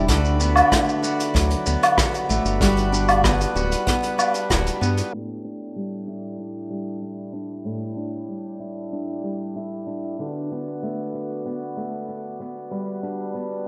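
Folktronica at 95 BPM in a straight 4/4, this pastoral fragment of a longer piece moves through D6, Gmaj7 and A7sus4 chords. A reedy, breathing pedal harmonium holds mellow sustained chords underneath, while an up-front picked steel-string acoustic guitar plays arpeggios with audible finger squeak, colored by a low-pass filter and digital delay. From 5.1 s, as the music moves into a new section, a filter sweep runs across the guitar. A round, deep analog bass with a fast attack anchors the opening and drops out at 5.0 s, and a punchy kick drum in a pumping small room stops at 4.6 s. A vintage brush kit with a rolled-off top keeps going with hi-hat, rim click, shaker and woodblock, all in a rough home-demo mix softened by a moderate plate reverb.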